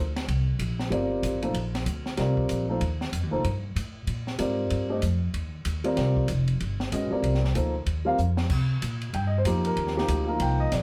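Heard from further back in a club reverb, this cool, hypnotic modal jazz excerpt swings in 4/4 over a Cm11 chord, with a woody pizzicato upright bass up front from 0.0 s, an open acoustic drum kit with a high-tuned snare and boomy kick entering at 0.2 s on ride, hi-hat, crash, kick and snare, and a dark, mellow concert grand piano accompanying up front from 0.9 s, before a short drum fill leads into a new section.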